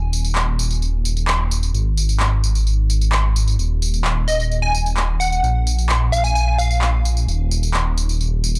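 A thick, saturated detuned saw bass with chorus drives this euphoric, anthemic festival progressive house fragment from the first moment, its sustained, detuned unison tone sitting up front. Layered electronic tambourine and handclaps, re-recorded in a small room, enter at 0.1 s. A punchy, bright plucky unison lead with phaser and delay carries a catchy melody from 4.3 to 6.9 s, all within a dark digital ambience.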